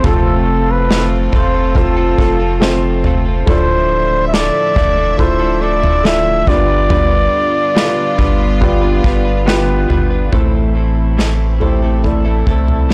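A blown-out, overdriven recording in a small room gives this heartbroken pop ballad in A minor a saturated sound, moving at a slow 70 BPM in a straight 4/4 and cut from a longer piece. Out front, a flugelhorn carries the melody in a jazz style, its soft attack, light vibrato and scooped notes lending a warm, melancholic quality. Beneath it, a felt-muted upright piano supplies mellow, intimate accompaniment, while a clean electric guitar, recorded direct and compressed, picks out arpeggios. A rich string section floats in the background with pure, sul tasto sustained chords, and a thick, up-front sub bass adds a deep, triangle-shaped low end with a fast attack. An acoustic drum kit played with bundle sticks brings a punchy kick, a medium-tuned snare and toms, as the harmony moves from F through Dmadd9 and G7 before settling on A minor at 10.3 seconds.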